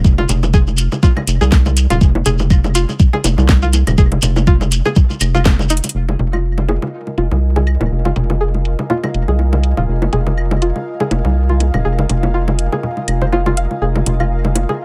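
A rubbery, hollow square bass pumps under a knocking kick, grainy shekere, overdriven bongos, congas and claves, and a garage kit with cracking snare and metallic hats in this quirky, clinical swung minimal techno excerpt, where a twangy string-like pluck with dub echo runs through a filter sweep from 5.9 seconds as an airy, breathy pad and a bubbling, resonant stepped-filter texture fill in behind it.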